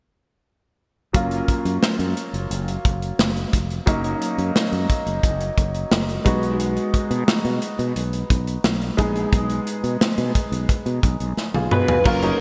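A punchy, up-front studio drum kit drives this uplifting, nostalgic 1980s-style pop excerpt, its kick, snare, hi-hat, toms and crash cymbal soaked in gated reverb within a pumping room sound. Set at 88 BPM in a straight 4/4 in F# major, the passage moves from F#maj7 to B6 at 6.3 seconds, with a clear, intimate grand piano carrying the accompaniment, its action noise audible and a subtle chorus adding shimmer. A round fretless electric bass holds the low end beneath it. A drum fill at 11.4 seconds leads toward the close, where a dark, overdriven lead guitar from a small cranked amp enters at 11.7 seconds with a brief melodic phrase colored by analog chorus, while a very quiet, twangy twelve-string electric guitar adds a picked, compressed riff note. The whole sits in a lush hall reverb with bright, digital 1980s-style production.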